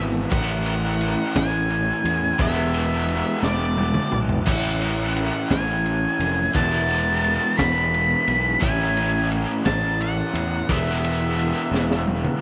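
An excerpt of hazy, kaleidoscopic psychedelic rock opens with three parts at once: a dark octave-fuzz lead guitar picking a melody between D5 and B5 through distortion and tape echo, a bright, double-tracked overdriven electric guitar riffing from A2 to E4 with harmonic tremolo, and a fuzzy, fingered electric bass anchoring the low end from E1 to E2. A crunchy breakbeat drum kit joins at 0.3 seconds, its punchy kick, high-tuned snare, toms and dark cymbals sounding saturated, gritty and rolled-off in a small room. The tempo is a slow 58 BPM in 6/8 with a straight feel, in E major and tuned slightly sharp to A4 = 441 Hz. The harmony simply alternates between A and E, while drum fills arrive at 3.4 seconds and again near the close at 11.7 seconds. Both guitars and the bass sit up front over a light small-room reverb, giving the piece a thick, woozy haze.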